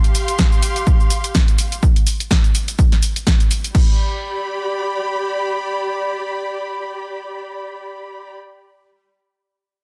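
A dense, heavily limited, nearly dry mix opens this joyful, sunny filtered disco house excerpt on a drop, where an up-front, rich, bowed studio string section holds sustained chords with vibrato, vintage 12-bit sampler grit and sidechain pumping over a layered house drum kit of punchy snare, bright hi-hat, shaker and crash, joined at 0.4 seconds by a punchy, tape-warm analog kick, until the drums stop at 3.9 seconds and the biting strings carry on alone to 8.3 seconds.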